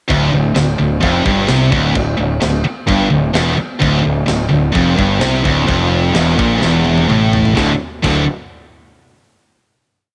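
A bright, scooped high-gain guitar leads this heavy, aggressive metal piece with a picked single-note riff, alongside a sludgy, overdriven second guitar on its own single-note riff, both with a cassette-tape coloring. Underneath, an up-front, growly fuzz bass drives in eighth notes and doubles the guitar riff, while a tight acoustic kit with a high-tuned snare, tight kick, china and crash cymbals and toms plays a metal groove with a big-room, tape-tinged sound. A drum fill at 6.6 seconds leads into a final chord at 7.6 seconds, and the whole piece carries the small-room ambience of a home cassette recording.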